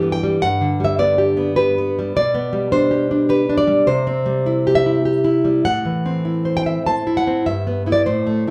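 In a 3/4 metre with a rubato feel, the tempo drifts between 92 and 109 BPM, giving this romantic piece for solo classical guitar a breathing, passionate and melancholic character. The nylon-string guitar plays alone for the full 8.5 seconds, fingerpicked across a range from G2 to A5, with a full-bodied, deep classical tone and audible finger squeak that brings the player close. It sits up front in a moderate, large studio reverb, captured as a live performance in one room, which lends the sound a spacious glow. The harmony moves from G through G/B and C to Am, arriving on Em/G at 7.5 seconds. Cut from a longer work, this passage is one intimate, expressive statement.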